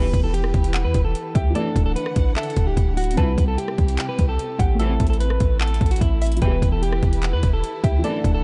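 A deep, boomy 808-style bass with a noise layer sits up front beside a trap drum kit of hard-clipped kick, metallic hats, handclaps and rim click in this eerie, brooding half-time hip hop excerpt at 148 BPM in E minor, where a slightly broken-up, filtered electric guitar carries the melody over a felt-muted, intimate upright piano, a soft round pluck with chorus and tape echo adds a second line, and a background studio string section with vibrato and portamento and a distant, roomy brass ensemble stabbing through tape echo darken the Em–Dadd9–C–Am progression in a dry, dark and warm mix.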